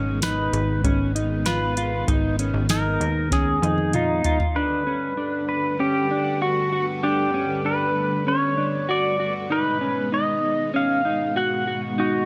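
A floating, blissful dream pop excerpt at 97 BPM opens on full-bodied string-machine cello chords with ensemble chorus and dark, clean electric guitar arpeggios through analog chorus and tape echo, joined at 0.2 seconds by a fingerpicked pedal steel melody with slide, volume swells and tape echo, while a punchy, sawtooth-and-square analog bass and a soft vintage rhythm box with a deep kick, crisp snare and metallic hats carry the opening, the drums rolling into a fill from 3.3 seconds before both drop out around 4.5 seconds, leaving strings, guitar and steel to drift over the move from G#m to Gmaj7 at 4.6 seconds and B6, all in light reverb.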